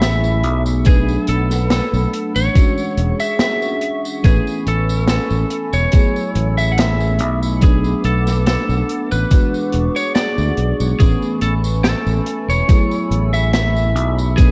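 A slow 71 BPM vaporwave groove in 4/4 with a light swing on the sixteenths, this melancholic, nostalgic excerpt in F# minor cycles through F#m11/A, Bm7, E13 and Amaj9 under an open jazz kit of hi-hat, snare and tambourine dressed in gated reverb, joined at 0.9 seconds by a thumpy, sampler-style electronic kick placed up front. A growly, overdriven fingered bass sits boldly in the mix, while an FM electric piano with a soft pad layer adds lush, dreamy chords through tremolo and analog chorus, and a detuned, warbling tape-like pad hangs softly in the background with slow attack and long release. Over the top, a lightly driven, slightly broken-up lead guitar carries the melody through tape echo, all wrapped in small-room ambience and a lo-fi cassette sheen.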